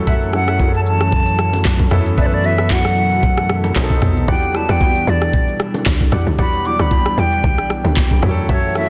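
A breathy, close-miked silver concert flute carries the expressive melody through tape echo in this deep, late-night amapiano excerpt in E dorian at 114 BPM, riding a swung, electronic afro-pop kit with a knocking kick, handclaps, rim click, shaker, toms and softly clipped snare, plus very quiet bright congas and bongos. A clear baby grand piano, a lush, warbling unison pad with chorus and sidechain pumping, and hollow, mellow organ stabs sit in the background over chords moving from F#m7 to Em9, while a fat, detuned analog bass hands over at 4.3 s to a tight, punchy log drum bass. A faint electronic noise sweep arrives at 8.7 s, all within light digital ambience and a dense, heavily limited modern master.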